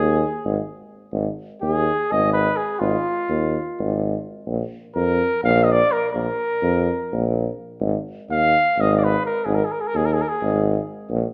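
A mellow, vintage-toned trumpet carries the melody and takes a solo from 1.1 seconds in this restless, fiery fragment of Balkan folk in 7/8. It plays over a warm tuba bass line with light vibrato, and both are heard in a classical style within the roomy ambience of a recital hall.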